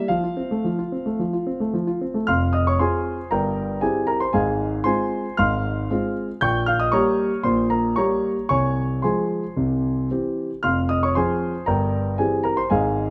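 Classical-period piano sonatina, graceful and playful in mood, taken from a longer piece and played on a solo concert grand with a deep bass, a smooth, vintage character and an up-front presence, ranging from F1 to G6. The pulse is flexible, with rubato and uneven beats, and after a brief opening on an F major chord the music moves into a new section at 2.3 s built on minor-key harmony. Close, detailed microphones capture the instrument, set within a moderate recital hall reverb.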